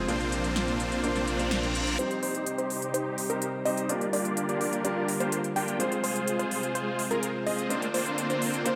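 Huge, bright supersaw chords sit up front in this anthemic festival progressive house passage at 126 BPM in C minor, playing a detuned riff through a low-pass filter and tape echo over a progression that moves from Bbadd9 to Cm, Gm7 and Fm. A lush supersaw pad holds slow-attack chords with a sub octave beneath, while a vintage concert grand piano adds intimate accompaniment with audible action noise and its own tape echo. A thick, chorused detuned saw bass anchors the opening on Bb1 until 2.0 seconds, when a very quiet, wave-folded unison pluck enters with short-decay arpeggios and a moving notch. From that point a build-up takes hold, with a filter sweep on the supersaw sound, while the punchy, overdriven big-room drum kit, present from 0.1 seconds, drives crisp hats and snare. A faint reverse cymbal and riser arrive at 1.3 seconds, and the whole cut, taken from a longer track, sits in a moderate scoring-stage reverb for a powerful feel.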